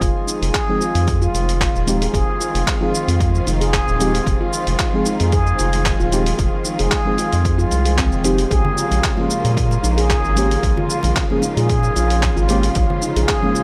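Organic downtempo in F minor at 113 BPM, this meditative excerpt moves with a gentle 16th-note swing over a chord shift from Fm7 to Bbm7 at 8.5 seconds. A ringing stainless-steel handpan sits up front with arpeggios, its tone carried by delay and shimmer reverb, while a con sordino string section holds veiled, lush chords beneath it, breathing with sidechain pumping. Muted felt-like synth keys enter at 0.7 seconds, intimate and decaying, thickened by chorus, delay and shimmer. A round, deep analog bass anchors the low end, joined by a punchy overdriven electronic kick and a gritty, dusty sampler-style kit of cabasa, handclaps and hi-hat. Very quiet hard-hand congas slip in at 8.6 seconds, and the whole piece sits in light small-room ambience.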